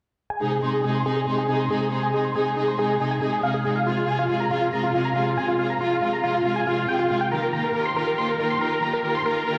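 A huge, detuned supersaw lead enters at 0.3 seconds in this bittersweet, soaring trance fragment cut from a longer piece, its thick, bright unison tone carrying the melody up front with vibrato, digital delay and a sweeping low-pass filter. From 0.4 seconds a dark studio string section joins with soft-attack bowed chords played sul tasto, floating and pure beneath the lead as the harmony moves from Ab to Fm to Ebadd9. A lush hall reverb and the sound of a big sound system played in a bare room give the whole passage a vast, echoing space.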